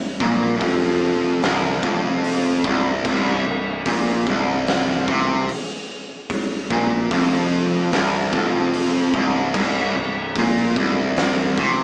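At 0.2 s a double-tracked, compressed fuzz guitar riff crashes in up front with an oversized, low-tuned drum kit, setting a brooding, ominous stoner and doom metal groove at 74 BPM in a straight 4/4 over a C7sus4 chord. The distorted guitar riff sits low between C2 and C3, while a growling, fingered electric bass with overdrive rumbles in the background and the drums hit with a fat snare, a punchy kick, hi-hat and crash cymbal, their gritty, saturated tone given a rolled-off top. The band sounds as if it is playing live in one small room with a moderate reverb and a small-speaker character, in a passage cut from a longer piece that runs to 11.8 s.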